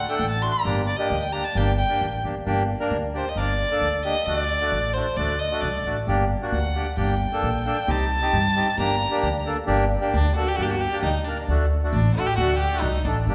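Klezmer in G harmonic minor at 133 BPM in a straight 2/4, this short passage cut from a longer piece feels festive yet soulful. A single bowed violin carries the melody up front, its tone warm and nasal with a smooth, even vibrato and a slightly boxy colour, ranging from D4 up to C6. The accordion supplies reedy, airy accompaniment in the middle register, while the upright bass plays pizzicato on steel strings, giving a woody, thumpy pulse that sits just as close. The violin takes a solo from 2.5 to 9.7 seconds, over harmony that moves mostly between D and G minor with a brief turn to C minor, before a final section begins at 9.7 seconds. A wet recital-hall reverb with a 1.5-second tail places the trio in a church or concert hall.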